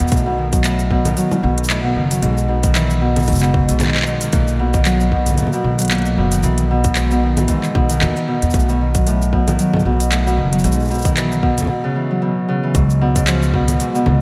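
Playful and delicate, this short folktronica cut from a longer piece sets a ringing, fingerpicked Celtic harp up front, its arpeggios trailed by tape echo, over a woody pizzicato upright bass on steel strings and a lightly swung 16th-note groove. An organic electronic kit of congas, handclaps, shaker and crisp hi-hats plays alongside a tight electronic kick; both drum parts sound tape-warm and re-recorded in a large room, and the whole dreamy mix is soaked in cathedral reverb. The harmony circles between B7 and Emaj7 shades until a break at 11.7 seconds on F#7sus4, and a brief new section opens on C#7 at 12.7 seconds.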